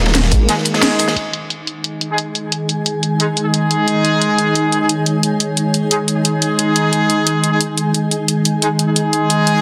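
This excerpt of dark, aggressive technical drum and bass at 177 BPM opens on a drop, with a sweeping resonant pad of detuned sawtooth chords, airy and evolving under chorus and sidechain pumping, held until the end around 9.6 s. The up-front drum and bass kit comes in at 0.1 s with a cracking snare, hi-hat and rim click, joined briefly by a gritty, saturated breakbeat kit whose dark cymbals and medium-tuned snare sound from a small room before dropping out at 1.2 s. A nasal, wobbling vowel-sweep bass sounds a single low G#1 at 0.3 s, while a bright brass section with light vibrato enters at 0.5 s with stabs through tape echo and a low-pass filter, and a band accent lands at 0.8 s. From 1.6 s a blurred, full-bodied granular cloud pad adds a pumping haze high above. The whole sits in a lush hall reverb with a dense, heavily limited modern master.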